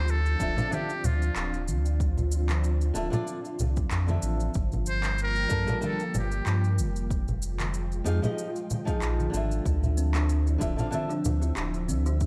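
A gently swung sixteenth-note groove in four sets the pace for this smooth, relaxed sunset chillout piece, cut from a longer work. A punchy, overdriven electronic kick and layered electronic cabasa and handclaps, both given overdrive and studio reverb, sit alongside damped, low-tuned congas played with soft hands. A deep, round sine sub bass holds the low end up front, while a silky vintage string machine with ensemble chorus lays slow-attack sustained chords that move through minor ninth harmonies, and a fingerpicked flamenco guitar adds accompaniment through a digital delay. A muted trumpet carries a buzzy, thin, jazz-style solo melody with vibrato and a smooth top, also delayed, until 6.8 s. From 9.7 s a woody, hollow kalimba plays short thumb-plucked arpeggios with delay in the background, all within a dark, moderately reverberant mix that keeps a small-room closeness.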